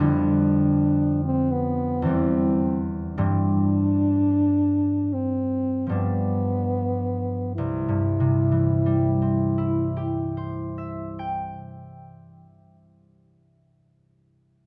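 Romantic classical music for French horn and harp, this short excerpt cut from a longer piece has a tender, serene mood in 3/4 at a rubato 34-62 BPM, slowing down through its first 7.6 seconds. The dark French horn carries the melody between B3 and E4 with light vibrato, its tone distant and roomy yet placed up front as a solo voice, until it stops at 11.3 seconds. The concert harp supplies fingerpicked accompaniment from C2 to G5, its strings ringing and warm, and it continues alone until 13.7 seconds. The harmony in C major moves from G7/F through C/E, C/G and G7 before settling on C at 7.6 seconds, where a second section begins. A moderate recital hall reverb surrounds the duo, captured with close, detailed microphones.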